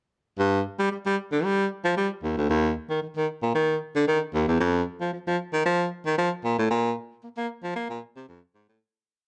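Funky and danceable, this short funk breakdown at 114 BPM in 4/4 features a solo baritone saxophone, clear and up front with vibrato and a smooth top, playing a fat, syncopated boogie bass line between D2 and Bb3 with muted ghost notes and chromatic approach notes, entering at 0.4 s within a dark production with light reverb before fading out from 6.7 s to its close at 8.8 s.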